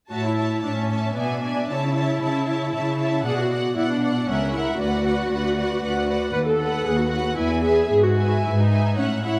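Bathed in a moderate scoring-stage reverb, this graceful, cheerful fragment of a quick classical-period movement for string orchestra moves in 3/4 at 115 BPM with a rubato feel: a lush, focused violin section carries the melody above a smooth, close second violin line, a rich viola section supplies the accompaniment, and an up-front cello section holds the bass, while the key turns from A major to E major at 6.3 seconds.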